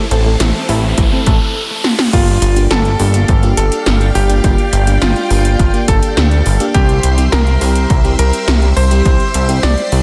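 A dense, heavily limited modern master with light reverb opens this driving, cinematic synthwave passage, cut from a longer piece, in G dorian at 104 BPM in a straight 4/4. The first 2.1 seconds build on an electronic riser and a filter sweep across a round, nasal analog pluck arpeggio in the background, while a dark, clean electric guitar riff sits very quietly beneath and stops at 1.3 seconds. A lush string machine holds sustained chords throughout, its vintage sawtooth tone thickened by phaser, ensemble chorus and sidechain pumping. Up front, a glossy chorused synth bass with tube saturation anchors the low end, joined by overdriven 80s pad drums with a gated snare and metallic hats, a punchy electronic kick from 1.0 seconds, and a drum fill at 1.8 seconds. Dreamy FM electric piano stabs layered with a soft pad add detuned shimmer with chorus and delay. From 2.1 seconds a bright, cutting electric grand piano carries the melody with long sustain and tape echo as the harmony moves from Am to Gm7 and then to C.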